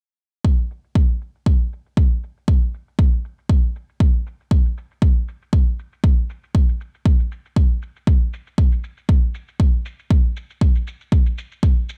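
Hypnotic and spiritual, this afro house excerpt moves at 118 BPM in 4/4, with a gentle swing on the sixteenths giving the groove a loose, rolling feel. A deep electronic kick drum sits up front in the mix, carrying the pulse from 0.4 seconds through 11.7 seconds with a touch of small-room reverb. An electronic shaker joins almost at once, set far back and softened by a low-pass filter and its own small-room ambience. A filter sweep on the drums runs across the whole passage, adding a sense of transformation to the otherwise sparse, percussion-only arrangement. The overall sound is dry and close, cut from a longer piece.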